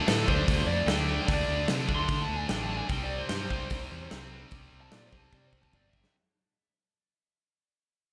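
Hard rock at 148 BPM, this driving, aggressive cut finds a dark, overdriven lead guitar soloing across the whole 6.1 seconds, high above a pair of bright, high-gain distorted rhythm guitars riffing in the background over D5 and then C5 chords. A growly fuzz bass, fingered and overdriven, anchors the low end, while a punchy acoustic drum kit sits up front with a medium-tuned snare in a stone room, closing with a fill from 5.3 seconds. The whole passage is fading out, and the sound carries a small room ambience with a rolled-off top end.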